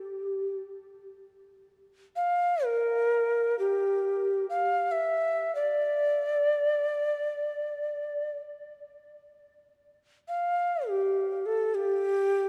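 Bathed in a church reverb with a long 3.7-second tail, this dark, warm-sounding recording drifts in free time, a haunting and spacious piece of meditative world music in G dorian, cut from a longer work. A mellow Native American-style cedar flute plays alone and up front from 0.0 to 12.5 seconds, ranging from G4 to F5, its airy wooden tone carrying vibrato, tongued notes and chiff. A diffuse ambient delay trails the flute, and its unsteady playing adds a fragile, human quality to the open space.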